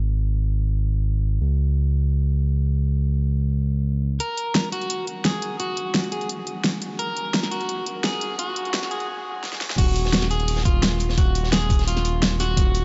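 A smooth, mellow sawtooth-and-triangle synth bass opens this dreamy, soulful liquid drum and bass passage in Eb minor at 172 BPM, playing alone until a dark, slightly broken-up electric guitar with tape echo carries the melody and an up-front, overdriven pop kit with a fat snare arrives at 4.2 seconds for the build-up. After a break and drum fill, the drop lands at 9.8 seconds on an Ebmadd9 chord, where the bass returns beside a knocking, overdriven electronic kick and a gritty, saturated breakbeat kit with a rolled-off top tucked in the background. The whole mix is soaked in a long cathedral reverb and rolled off above 7.8 kHz, and the passage is cut from a longer piece.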